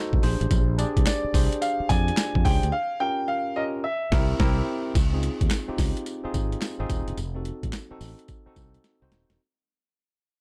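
A worn, slightly out-of-tune tine electric piano opens this slick, bouncy new jack swing in F minor at 108 BPM. It is joined almost at once by a punchy fretless bass and a gritty, overdriven boom bap drum kit of thumpy kick, snare, handclaps, tambourine, hi-hat and crash that sits up front with a small-room character. A deep, open concert grand piano carries the melody from 1.1 to 4.6 seconds through a break and band accent over chords such as Bb13 and C7, before the swung, dark and dry groove fades out over Dbmaj7 and F7b9 from 5.0 seconds, ending on a drum fill.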